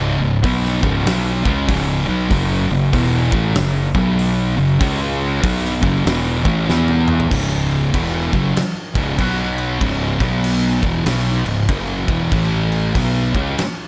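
A heavy, hypnotic stoner and doom metal excerpt with a swung 4/4 feel, where one distorted fuzz guitar riffs up front and a darker one sits behind it over overdriven fingered bass, while a big acoustic rock kit with a punchy kick, fat snare and bright cymbals joins at 0.4 seconds and plays a fill before the section change at 7.3 seconds, all in a dark production with light reverb.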